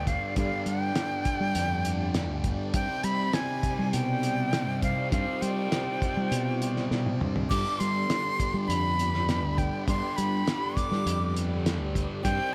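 A breathy, reedy flute with tape echo carries the melody from the first moment of this dark, hypnotic psychedelic rock excerpt, over a phased, double-tracked fuzz guitar riff, a round fingered electric bass, vintage sawtooth string-machine violas with ensemble chorus in the background, and a buzzing tanpura drone that is barely audible and stops at 4.3 seconds. A cloth-damped, thuddy drum kit sits up front with a fat snare, tight kick, muffled dark cymbals, hi-hat, toms and splash, and plays a fill from 6.9 to 7.5 seconds just before the chords return to G. Light studio reverb surrounds the whole ensemble.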